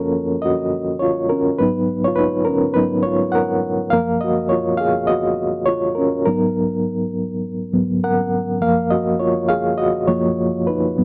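A dry, close recording with a 1970s studio character puts a lone reed electric piano up front, heard through its built-in speakers. This short soul fragment, cut from a longer piece, moves at 103 BPM in 4/4 with a gentle 16th-note swing, and its mood feels cinematic and silky. The piano plays solo from 0.0 to 11.0 seconds, spanning F#2 to F#5, its reedy, worn tone kept clean and shimmering under a fast tremolo. The recording is tuned to A4 = 439 Hz, and the piano's slightly out-of-tune quality adds to its lived-in charm. The harmony rocks between F#maj7 and G#m9 throughout, giving the passage a dreamy, suspended quality.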